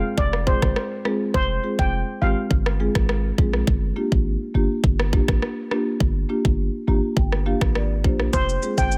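A straight 4/4 dancehall groove at 103 BPM rides on an electronic drum kit with a tight kick, rim click and shaker, joined by a punchy, heavy 808-style bass with a fast attack, both running from 0.2 seconds to the end of this clip from a longer piece. Soft-mallet marimba with a woody, round tone supplies accompaniment over Fm and Gm7 in G phrygian, taking a fill at 6.6 seconds, while a shimmering steel pan lead with tape echo carries the melody at the opening and returns at 8.3 seconds. The mood is hypnotic and tough, set in a small room ambience.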